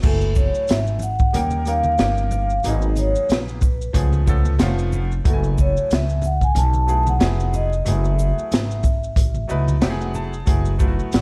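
A swung groove from an up-front open jazz kit with dark cymbals, a high-tuned snare and a boomy kick drives this cool, mellow jazz-hop excerpt, where a growly pizzicato upright bass anchors the harmony, a clear, slightly detuned upright piano with long sustain comps and adds a fill from 9.2 to 10.5 seconds, close, dry maracas and congas sit in the background, and a vintage, band-limited vibraphone played with soft mallets and a slow motor vibrato carries the ringing melody until 9.8 seconds, all wrapped in small room ambience and vinyl crackle.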